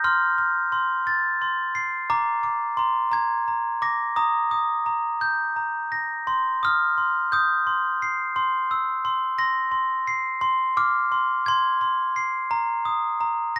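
A tender, innocent children's lullaby in Eb major, drifting at a rubato 58 BPM in 6/8, this brief cut from a longer piece features a solo glockenspiel played with soft plastic mallets, its metallic, bell-like tone dark and smooth as it rings up front through a moderate small-room reverb, moving through chords from F and Bb7 to Eb before a second section opens at 6.3 s and wanders via Eb6, C7 and Fm to settle on an unresolved Bbsus4.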